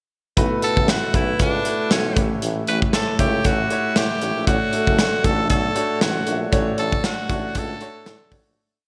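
Lightly swung sixteenths in 4/4 drive this glossy, uplifting 1980s-style pop pre-chorus, where a modern studio drum kit sits up front with a big backbeat, a punchy kick and gated reverb, while a clear, vintage-toned tuba plays a syncopated pop-funk bass line with chromatic approach notes. A warm concert grand piano, touched with subtle chorus and audible action noise, pushes eighth-note chords in drop-2 voicings over B7sus4, A7 and Dmaj7, and from 0.6 seconds a raspy, gritty tenor saxophone with vibrato carries a forceful, motif-based melody in sentence-like phrases. The bright digital production is bathed in a wet plate reverb, and the piece fades out from 6.5 seconds.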